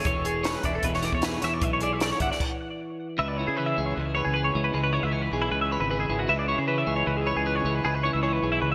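Math rock and Midwest emo at 154 BPM, wistful and intricate, where a bright, twangy twelve-string electric guitar picks up-front arpeggios through analog chorus and digital delay over a clean electric guitar's compressed, lush-chorused accompaniment and a round, fuzz-overdriven fingered bass, while a dry compact cocktail kit with a punchy kick, high-tuned snare, dark cymbals and gated reverb plays only until 2.5 s before a brief stop gives way at 3.2 s to a shift from E13 to C#m7, all set in a moderate hall reverb with bright 1980s-style digital production.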